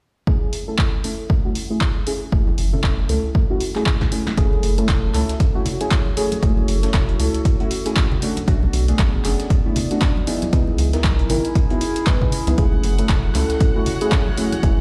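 Played through a big sound system in a bare stone room, this hypnotic deep house excerpt opens with soft, detuned chord stabs, colored by chorus, phaser, tape echo and sidechain pumping, over an up-front, tape-warm electronic kick and a punchy analog drum machine of claps, hi-hat and snare. A rubbery, hollow square bass with tube saturation and bright congas in the background arrive near 2.3 seconds, followed by a very quiet, gritty sampler-style kit of hi-hat and snare after a drum fill, and a warbling, nostalgic lo-fi pad with chorus, reverb and pumping. A rich, distant bowed violin section enters at 12.6 seconds as the minor-seventh chords return to their opening.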